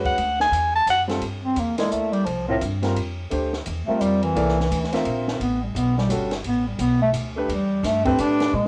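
Spiritual and intense, this modal jazz fragment in a swinging three-beat feel opens with a brief soprano saxophone solo, its light vibrato, subtone and scooped notes placed up front over grand piano accompaniment, woody pizzicato upright bass and a distant, roomy cocktail drum kit with dark cymbals and a punchy kick. At 1.2 seconds a clear bass clarinet takes over the solo, its vibrato and scooped notes riding over suspended ninth chords. The piano, drums and both reeds carry a cassette-tape color, set in moderate studio reverb with the intimate feel of a home recording.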